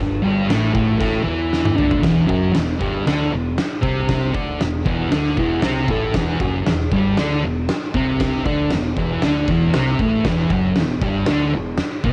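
Garage rock with a menacing, swaggering strut, this clip opens on a thick, double-tracked fuzz guitar riff sitting up front, picked and distorted with a cassette-tape grit, over a bright, overdriven fingered bass growling with tube saturation in the background. An oversized, low-tuned acoustic drum kit joins at 0.5 s with a fat snare, punchy kick and dark cymbals in a pumping stone room, then a drum fill at 1.5 s carries the riff from a G5 power chord into E minor at 2.0 s. The home cassette recording carries light reverb throughout.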